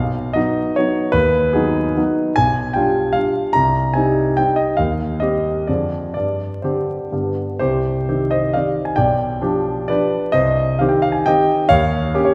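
Classical romantic triple-time dance in C minor, a nostalgic and capricious 3/4 piece for solo concert grand piano with dotted rhythms and free rubato that lets the tempo drift between 118 and 166 BPM. The piano sits up front with a warm tone, deep bass and short sustain, framed by a lush hall reverb and a light bed of vinyl crackle. Opening on B and a G7/B before settling into C minor, it turns to a second section at 7.6 seconds and ends this fragment of a longer piece on an Eb7 chord at 11.7 seconds.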